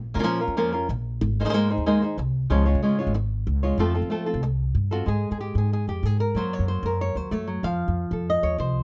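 Fiery and dramatic, this short flamenco excerpt drives forward at 187 BPM in a straight 4/4, cut from a longer piece. A flamenco guitar carries the melody from 0.1 seconds, fingerpicked with a dark, acoustic tone, while a pizzicato upright bass underpins it from the very start with a woody, thumpy sound on steel strings. Both instruments sit up front in the mix, wrapped in light reverb, with the guitar reaching up to F5 and the bass dipping down to Ab1. The harmony moves from Bbm through Abadd9 and Db to F, then shifts at 5.1 seconds into a new section built on a rootless Fmadd9, Gb and a return to F. Slightly off standard pitch, with A4 at 439 Hz, the performance runs to its end at 8.8 seconds.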